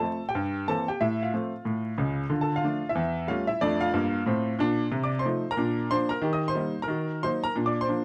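A solo baby grand piano opens the fragment at 0.0 s and carries it alone to the end at 8.0 s: an exuberant, swinging stride jazz piece at a brisk 183 BPM in 4/4, with a 62% swing on the eighth notes. The piano sits up front with a clear, worn, intimate tone, short sustain, and audible action noise. Its playing spans from Db2 up to Eb6. The harmony moves from C7/G through F/A, Dm and A7/E before settling into Bb major at 4.9 s, where F7/C leads to Bb, Eb and a darkening Ebm before returning to Bb. The instrument is tuned slightly sharp, to A4 = 444 Hz, and sits in a modest club reverb within a dark production overlaid with vinyl crackle.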